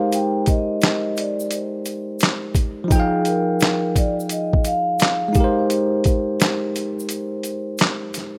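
A gritty, pitched-down boom bap drum kit sits up front with a thumpy kick, a medium-tuned snare, hi-hat and handclaps, swung at 86 BPM beneath a bell-like, clean tine electric piano that accompanies through Abmaj7 and Fm7 chords in this reflective, melancholic lo-fi hip hop excerpt. A mellow vibraphone played with soft mallets carries the melody through tape echo until 7.8 seconds, while a grainy tube shaker stays in the background. The dry, rough home-demo mix moves into a break at 7.1 seconds before the cut at 8.4 seconds.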